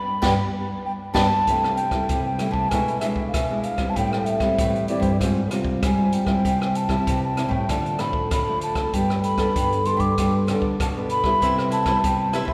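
Set in a wet, churchlike reverb, this lively, playful samba-choro excerpt at 96 BPM in C major features an airy wooden baroque flute carrying the melody with a crisp attack over fingerpicked classical nylon-string guitars on accompaniment and bass, a distant, roomy jazz kit with high-tuned snare and boomy kick, and a bright cavaquinho in the background that appears only at 0.2 and again at 11.4 seconds, with a band accent opening the cut before chords move from C6 through Am7 and Gadd9 to a closing Cmaj7.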